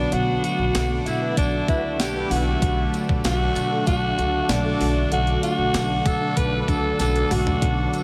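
This moody, dramatic 1980s-style pop fragment moves at a straight 96 BPM under a dreamy mix soaked in a huge ambient reverb. A raspy, gritty alto saxophone carries the melody up front, bright and punchy, with a diffuse ambient delay trailing its phrases, while a soft, pure FM synth bell traces a very quiet second line above it. Beneath them, a bell-like tine electric piano plays clean accompaniment through a lush chorus, and an airy, detuned sawtooth pad with a noise layer holds sustained chords in the background. A woody, dark pizzicato upright bass anchors the low end, and a sampler-style 12-bit drum machine, overdriven and re-recorded in a small room, adds a thumpy kick, medium-tuned snare, hi-hat, tambourine and toms, with a drum fill from 7.0 to 7.6 seconds. A jingly, compressed acoustic tambourine sits far back from 0.4 seconds, and mellow, round synth brass stabs enter at 1.2 seconds, shortly before the harmony shifts from B minor to D over B at 2.6 seconds.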